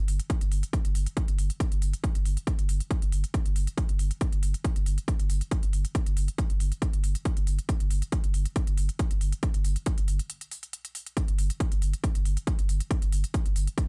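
Driving peak-time techno with a hypnotic pull, this short cut from a longer piece runs on a straight 4/4 metre. A saturated sub bass on G1 sits up front from the first moment, deep and thick with a sine-like body, a fast attack and sustained notes, its overdrive, low-pass filtering and sidechain pumping giving it a breathing weight. The electronic kick drum enters at 0.3 seconds, heavy, layered and overdriven, placed forward in the mix with a touch of small room reverb. A smooth, layered electronic hi-hat rides much lower in level, also overdriven and set in the same small room. A brief break at 10.3 seconds interrupts the groove before it returns, all of it wrapped in a digital ambience.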